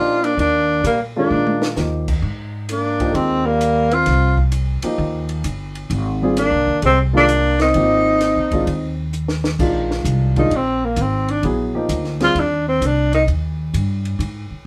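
A swung 4/4 groove carries this open, hypnotic modal jazz excerpt, with the upright bass thumping out a woody, up-front pizzicato line and a compact cocktail drum kit adding dry, dark cymbals, a high-tuned snare and a punchy kick, with fills at 1.3 and 9.1 seconds. A breathy tenor saxophone takes the melody with a whispered, intimate subtone, soft attacks, scooped notes and vibrato, sounding both up front and roomy. Beneath it, a bucket-muted trombone plays a veiled, mellow second line in the background until 9.1 seconds, while a baby grand piano comps in a natural, short-sustained voice on Ebmaj9 and Abmaj9 chords. At 9.6 seconds the harmony settles on Bb9sus4 and the saxophone opens into a solo, with the piano dropping out at 12.3 seconds. The band plays live together in a moderate studio room before the excerpt cuts off mid-flow.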